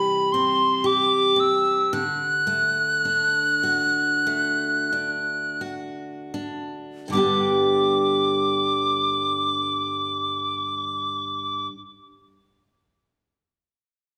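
An airy, unsteady wooden whistle with chiff, tongued notes and vibrato sings a tender, nostalgic Celtic slow air up front over a picked steel-string acoustic guitar, moving freely through C and D chords as it slows down across the first 7.1 seconds before settling on G, all bathed in the moderate reverb of a church or concert hall in this short fragment of a longer piece.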